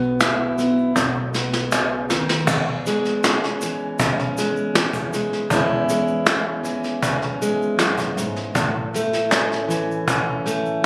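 Nostalgic and warm, this short acoustic folk excerpt moves at an unhurried 79 BPM in 4/4 with a straight feel, set in E major and tuned slightly high to A4 = 444 Hz. Up front, a fingerpicked, plugged-in steel-string acoustic guitar carries the accompaniment through the whole 10.9 seconds, its tone warm, while a woody, dark pizzicato upright bass sits low in the background. A snappy cajon with snares shares the foreground despite its distant, large-room character, and a vintage brush drum kit enters at 0.2 s with dark cymbals, a medium-tuned snare, a tight kick and a rolled-off top, adding a drum fill from 1.0 to 2.5 s. A grainy, bright tube shaker stays close but tucked behind the other parts. The harmony settles from Bsus4 to B, then opens into E6, C#m/E and finally A, all heard through a moderate club-like reverb captured by a phone in the room.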